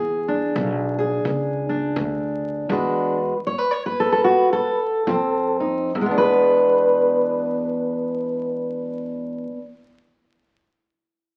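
Dark, up-front fingerpicked steel-string acoustic guitar carries the melody over woody, thumpy pizzicato upright bass from the very start of this laid-back, soulful acoustic country blues excerpt, while a smooth, punchy brushed kick drum sits in the background from 0.6 to 5.3 seconds, the swung feel slows down through the first 6.0 seconds, and light reverb and the crackle of a very old 78 rpm record frame the sound.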